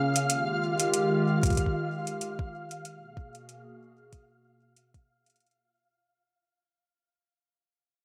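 A bright 1980s-style digital production bathed in a lush hall reverb opens this short, melancholic and glitchy IDM excerpt at 94 BPM, fading out under a filter sweep on the hollow, flute-like pad that sustains Fm9 and Abm9 chords with chorus. A flickering, grainy granular texture hovers high above it, while metallic, tape-touched electronic hi-hats enter at 0.2 s with a gentle 16th-note swing. A soft, overdriven kick joins at 1.4 s.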